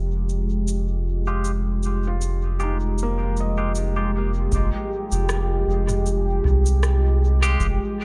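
Meditative and spacious, this short ambient dub cut in F minor moves at 78 BPM with a gentle sixteenth-note swing, as a deep, moody detuned-sawtooth pad with chorus holds sustained chords over a round, up-front sub bass while a felt-muted upright piano, soft and intimate with audible action noise, plays filtered arpeggios through tape echo; a tape-warm electronic kit of rim click, shaker and toms drifts in dub echo from 0.3 s, twangy clean electric guitar stabs arrive at 1.3 s, and a very quiet analog kick joins at 4.5 s.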